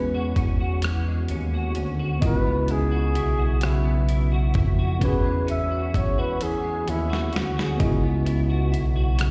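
A breathy, mellow flugelhorn carries the solo melody in this intimate slow R&B excerpt in 6/8 at 43 BPM, its jazz-style phrasing marked by scooped notes and light vibrato, with slapback and tape echo trailing its lines until it stops at 8.1 seconds. Beneath it, a bright, twangy clean electric guitar plays a picked second line through an ensemble chorus, while a worn, slightly out-of-tune tine electric piano, heard through a combo amp with its own slapback echo, supplies the accompaniment. Up front, a smooth, gliding synth bass blends sawtooth and square-wave tones, detuned and sustained with portamento. A dusty, sampler-style drum kit enters at 0.4 seconds with a thumpy kick, a medium-tuned snare, rim clicks and hi-hat, gritty and compressed, and it plays a fill partway through. The harmony alternates between E69 and C#m11 in E major, and the whole performance sounds like a live gig heard through a venue's PA, with light reverb and the glow of a recital hall.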